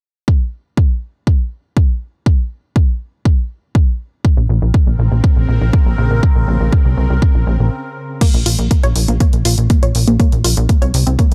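An overdriven, layered electronic kick sits up front from 0.3 s in this cinematic, dramatic melodic techno excerpt, soon joined by a funky, ring-modulated analog bass and a bright, morphing wavetable pad whose sustained chords pump with the sidechain through phaser and reverb. After a brief stop, at 8.2 s a lush, detuned unison pluck takes up arpeggios through analog delay and a filter sweep, alongside an analog drum machine adding crash cymbal and hi-hat. The dry, gritty recording carries a digital ambience.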